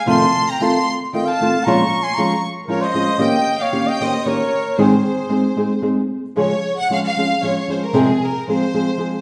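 A bowed violin section and a soft-attacked trumpet open this brief passage together, with a nylon-string guitar joining at once beneath them in a festive, romantic mariachi style rooted in Mexican folk. The violins carry the melody with a clear, earthy tone and light vibrato, sitting close and up front. The trumpet supplies a second line in a warm, classical solo manner until 5.8 seconds. The thumb-plucked guitar gives a small, acoustic accompaniment, placed forward in the mix and the loudest of the three parts. In 3/4 at 114 BPM with a rubato feel, the harmony in Ab major moves through F7, Bbm7 and Eb7 to Ab, then turns to Db and Fm in a new section from 6.4 seconds. A wet recital-hall reverb surrounds the ensemble, and the music is cut from a longer piece.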